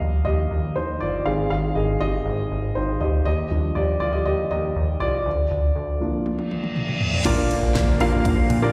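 This anthemic, uplifting piano-driven pop fragment moves at 120 BPM in a straight 4/4, set in Eb major and tuned slightly low to A4 = 438 Hz. A dark, woody upright piano with a vintage character leads from the opening, carrying the chords of Ebmaj7, Ab and Bb with a slapback echo. Beneath it sits a glossy, retro synth bass built from pulse and sawtooth tones with a filter pluck and chorus, mellow yet up front. At 6.3 seconds a punchy, layered electronic drum kit arrives with a fill across kick, fat snare, toms, handclaps and cymbals, while a reverse cymbal sweeps into an impact. From 7.3 seconds a soft, shimmering blend of pipe organ and strings celeste sustains romantic chords in the background as the new section opens. The sound suggests a live gig heard through a venue's PA, wrapped in recital hall reverb.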